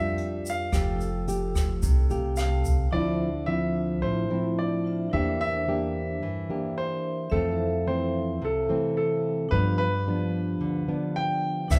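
A straight 4/4 bossa nova pulse at 109 BPM in D minor sets a sunny, sophisticated mood in this short cut from a longer piece. The brush drum kit, with hi-hat, rim click and a boomy kick, sounds distant and roomy and plays only from 0.2 to 2.8 seconds before returning briefly at the very end, while a grainy, close and dry tube shaker joins it over much the same span. Up front, a smooth, vintage grand piano carries the melody, supported by a thumb-plucked classical nylon-string guitar whose finger squeaks come through, while a woody, thumpy pizzicato upright bass with steel strings anchors the low end. Further back, a metallic, ringing vibraphone with medium hard mallets and a slow motor vibrato adds bright colour and plays a fill from 1.8 to 2.9 seconds. The harmony moves from Bb6 and Fmaj9 into Dm9, C9/E, Fmaj7 and G7. The whole ensemble sits in a moderate recital-hall reverb with a 1.6-second decay, giving it the air of a church or concert hall.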